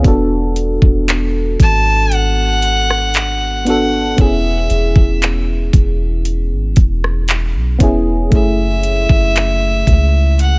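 Late-night and sensual, this short contemporary R&B excerpt moves at a slow 58 BPM in straight 4/4, with a dry, dark-toned mix. A mellow FM electric piano, round and coloured by chorus and phaser, plays chords from E9sus4 through E6 to F#m9 over a soft, deep 808-style bass and an up-front electronic drum kit of knocking kick, metallic hi-hat, rim click and handclaps. At 1.6 s a clear, nasal fiddle enters with the melody, its airy bow and light vibrato trailed by tape echo.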